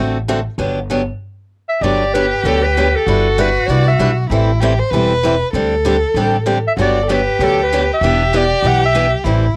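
This is acoustic string swing in the jazz manouche style, a charming, playful passage in G major at 194 BPM with a swung eighth-note feel, cut from a longer piece. A picked steel-string acoustic guitar with a bright, up-front concert tone carries the accompaniment, while a woody, thumpy pizzicato upright bass on gut strings anchors the low end with a dark voice. After a brief stop at 1.2 seconds, a bright clarinet enters at 1.7 seconds as the jazz-style solo melody, punchy and forceful with vibrato, yet set in a roomy, distant space. From 1.8 seconds a single bowed violin adds a close, expressive second line with a warm tone, a soft attack, portamento and vibrato. The harmony moves through D7, Gmaj7, Em9/G, Am9 and D7sus4, returns to Gmaj7, and then settles on Em7. The guitar, clarinet and violin carry the grainy character of a home cassette recording, all under a light reverb.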